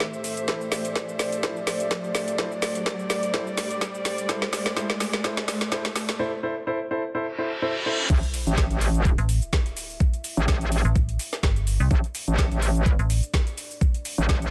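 A metallic, chorused wobble bass drives the drop at 8.1 seconds in this bouncy, gritty bass house excerpt, joined by a digital FM bass with tube saturation, both carrying sidechain pumping alongside an overdriven, knocking electronic kick and an up-front garage kit with a woody snare, hi-hat, cabasa and crash. Before the drop, a build-up with a drum fill gathers a riser and a reverse cymbal from an effects layer that also carries a sub drop, all under polished grand piano stabs with dub echo and intimate bowed chamber strings with light vibrato. Beneath it all, a moody, detuned analog pad sustains in the background, set in light reverb.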